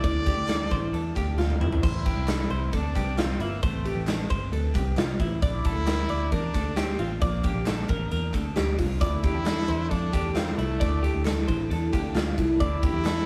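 Jangly indie pop in D minor at 134 BPM, wistful and bittersweet, with a clear, vibrato-tinged trumpet carrying the melody over warm, clean twelve-string electric guitar arpeggios, a round, foam-muted vintage bass and a punchy, up-front rock kit with bright cymbals that plays a fill at 1.4 seconds. A very quiet, woody string section holds lush bowed chords beneath, crisp handclaps join at 0.5 seconds, and a shimmering, octave-doubled twelve-string acoustic guitar sits in the background, dropping out at 1.8 seconds and returning at 9.0 seconds. The harmony moves from Dmadd9 to Bb and back, all captured as a rough rehearsal-room recording in a small, wet room.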